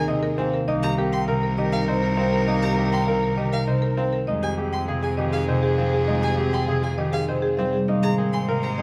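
A wet, large-studio reverb surrounds this meditative, hypnotic excerpt of minimalist pattern music in F minor, played at 100 BPM in a straight 3/4 and tuned to A4 = 436 Hz. A buzzing marimba with medium hard mallets carries the melody with a woody, dry, boxy tone, while an edgy, close-miked soprano saxophone adds a second line with light vibrato. The concert harp sits up front with a ringing, fingerpicked accompaniment, and a focused solo cello holds the bass beneath. Arpeggios come from a smooth, even solo violin high above and from a brilliant concert grand piano that enters at 0.1 s, its worn, intimate sound carrying audible action noise. A lush symphonic string section sustains chords distantly in the background as the harmony moves from Ebsus4 through Cm7 and Fmadd9 to Abadd9.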